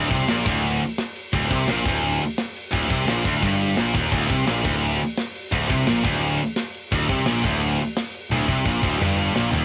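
Heavy metal at 172 BPM in a straight 4/4, heavy and aggressive, with two bright, distorted high-gain guitars (one scooped) playing riffs up front between D2 and C3 with a cassette tape tint, a growly, fuzzy, overdriven picked bass underneath, and a tight acoustic metal kit of kick, snare, toms and crash that enters at 0.1 seconds and closes with a fill from 8.3 seconds, all over a C7sus2/D chord in a light-reverb home cassette recording cut from a longer piece.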